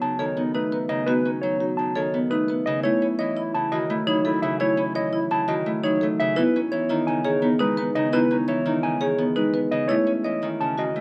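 A light reverb gives this short passage from a longer piece a gentle sense of space, with the electric guitar and Celtic harp sitting up front. It is minimalist classical pattern music in 5/4 at 170 BPM with a straight feel, and the mood is bright and hypnotic. The clean, dark-toned electric guitar carries the melody between B4 and A5, while the marimba, struck with medium mallets, adds warm arpeggios in the middle register. The fingerpicked Celtic harp supplies a ringing, mellow accompaniment from C#3 to C#4, and a clarinet with a soft attack and smooth top plays a quiet second line in the background. All four parts play throughout the 11 seconds over the chords B7, F#m7, Emaj7 and A6, with the final change arriving at 9.9 seconds.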